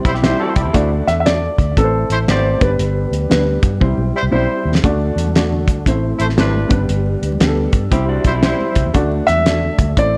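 A cassette-tape sheen and light reverb wrap this urgent, driving slice of 1960s-style soul, where a concert grand piano with tape echo carries the melody at the start and returns at 9.3 seconds over a worn, slightly detuned upright piano, a very quiet rotary-speaker tonewheel organ holding chords, a smooth-topped horn section on a second line, a lo-fi electric guitar riff played through a small old amp with spring reverb, a round, punchy foam-muted bass, a fat-snared, cloth-damped drum kit that plays a fill at 3.8 seconds, and faint, bright congas that enter at 4.8 seconds.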